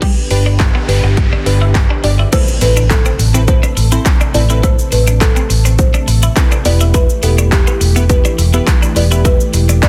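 Bittersweet and energetic, this dance-pop excerpt in A minor moves at 104 BPM in a straight 4/4, driven by a punchy, overdriven house drum kit of kick, handclaps, hi-hat, shaker and crash up front, with a round, foam-muted vintage electric bass pumping to the sidechain beneath it. Crisp, detuned wavetable chord stabs and a silky string machine in the background, both pumping, carry the harmony from G to Amadd9 and on to Em at 6.7 seconds, while a bright, twangy twelve-string electric guitar riff shimmers with analog chorus. A noise sweep runs from 0.5 seconds into an impact at 2.3 seconds, shortly after a woody, buzzing marimba played with soft mallets enters at 2.0 seconds with a dub echo on the melody, all within a dense, heavily limited, dry modern mix.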